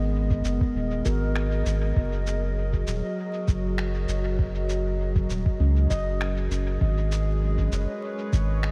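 A dreamy, reverb-soaked haze with vinyl crackle opens this short cut from a longer ambient dub piece at 99 BPM, deep and meditative, where a warbling, nostalgic tape-like pad with chorus holds G#madd9 and F#6 chords over a round, up-front sub bass and a muffled, thumpy pitched-down kick, while shaker and finger snaps carry dub echo, a mellow handpan rings soft arpeggios through delay from 1.1 seconds, and a bubbling, resonant stepped-filter texture surfaces in the background at 6.8 seconds.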